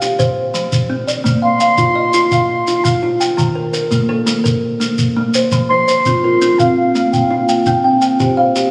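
A buzzing kalimba stands out near the close, entering at 5.7 s with soft, ringing fingertip plucks that join a woody kalimba whose short thumbnail-plucked arpeggios circle from the opening in a hypnotic southern African mbira-style interlocking cycle. The piece moves at 112 BPM in a straight 12/8, and this brief cut from a longer work stays within a single section throughout. A grainy, close shekere keeps time beneath the plucked parts, while a mellow wooden flute carries an airy, straight-toned melody with a soft attack from 1.4 s to 7.5 s. Both kalimbas sound up front and vintage, with a hollow-box, band-limited character, and the flute's highs are rolled off. The whole is heard through moderate concert hall reverb, as if captured on a phone in the room.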